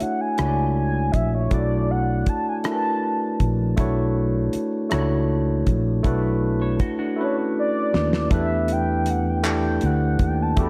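A slow, straight six-eight pulse at 53 BPM carries this sultry, late-night R&B excerpt, where a damped 70s drum kit with a fat snare, tight kick, hi-hat, rim click and handclaps (adding a fill at 7.2 s) sits under a round, dark fretless bass with ensemble chorus and a barky, lightly overdriven tine electric piano moving from Bm11 to Em11, while a mellow, horn-like sawtooth synth lead with vibrato, chorus and diffuse delay sings the melody in two phrases, a faint, clean semi-hollow guitar slips in at 6.6 s, and plate reverb soaks the mix in a dreamy haze.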